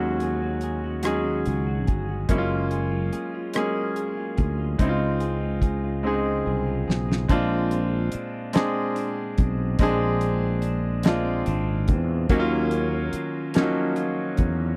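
A slow, straight six-eight pulse at 48 BPM carries this yearning, sultry R&B fragment, with a damped 70s drum kit placing a fat snare, tight kick, rim clicks and hi-hat up front and a drum fill between 6.0 and 7.3 seconds. A growly, punchy fretless bass and a brilliant concert grand with deep lows and short sustain sit close alongside, moving through Ebm11, Gbmaj9 and Dbmaj7 before settling on Bb9 and Ebm9. A clean, picked electric guitar with lush chorus adds a second line in the background, all within a dry, close 1970s-style studio sound and a small room.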